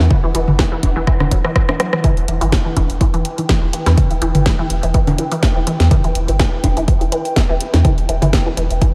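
A light reverb wraps this short cut of cool, quirky minimal techno, which runs at 124 BPM in 4/4 with a slight swing on the sixteenths and sits on a single E minor chord. A punchy, tape-warm electronic kick drum sits up front from 0.1 seconds, joined by a house drum kit of hi-hat, rim click and cracking snare, both sounding re-recorded in a large room. Electronic toms and congas, treated with analog delay, stay in the background, and a drum fill arrives between 1.1 and 2.0 seconds. Underneath, a round, deep analog bass with a fast attack and a filter sweep pumps against the kick through sidechain compression. The riff comes from a juicy, squelchy, bright blip pluck that warbles through a phaser, subtle chorus and a diffuse ambient delay, while an airy, breathy pad with a slow attack and long release drifts in the background under chorus.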